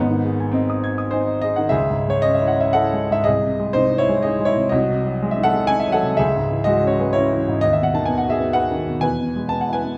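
A lone G# chord on a smooth, vintage-toned baby grand opens this passionate, brooding fragment of a romantic character piece, then at 1.7 s the music settles onto C# minor and moves through G#7 and B harmonies toward an E chord at 9.0 s, the up-front piano spanning G#1 to G#6 in a rubato 3/4 that drifts between 99 and 130 BPM, tuned to A4 = 438 Hz and set in a moderate recital-hall reverb.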